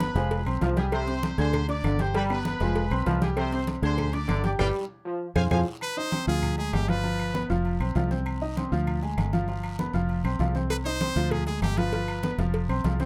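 Close, detailed and nearly dry, this fiery, passionate salsa excerpt sets brilliant section trumpets over a mellow, vintage-toned trombone section, clear baby grand piano and a dark, round fingered electric bass up front, with bright congas, a tight cowbell, ringing timbales and agogo bells, woody claves and a raspy guiro in the background, until a band accent and drum fill hand the melody at 5.8 seconds to a forceful solo trumpet with vibrato that returns at 10.7 seconds.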